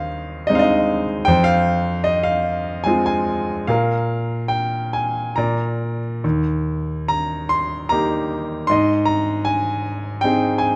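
A clear grand piano, natural in tone and placed up front, carries this tender, lyrical classical fragment on its own from 0.0 to 10.8 seconds, moving in an unhurried three-beat lilt with a freely breathing rubato. Its phrases span the low bass to the upper treble, drifting through gentle harmonies that settle homeward before turning again near the close. Close, detailed miking and a light reverb keep the sound intimate.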